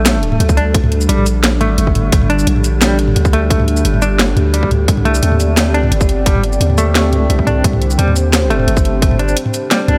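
Driving at 174 BPM with a half-time feel in G minor, this tense, spacious drum and bass excerpt moves from Gm to Cmadd9 at 4.9 s, built on a deep, mellow 808-style bass, a tight overdriven electronic kick and an up-front kit of cracking snare, bright hats, shaker and toms, while a moody detuned analog pad pumps with sidechain and chorus, a clean hollow-body electric guitar plays arpeggios through tremolo and digital delay, and a very quiet, eerie metallic drone enters at 1.0 s.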